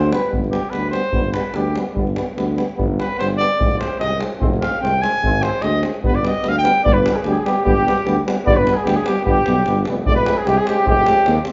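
A live band in one large studio room, drenched in reverb and with its top end rolled off, plays a fiery, virtuosic stretch of Balkan brass music in a straight two-beat metre, cut from a longer piece. After a brief opening figure, a clear, distant trumpet takes a solo from 0.3 to 6.8 seconds over chords moving between G, Fm and Ab. At 6.8 seconds the close-miked flugelhorn returns to carry the melody in a mellow voice with light vibrato, while the trumpet shifts to a second line. Underneath, a roomy tuba with its own light vibrato holds the bass, and a deep, acoustic davul drives the percussion from a distance. A soft-attacked euphonium and a roomy trombone sit quietly in the background as accompaniment, all in a classical style of playing.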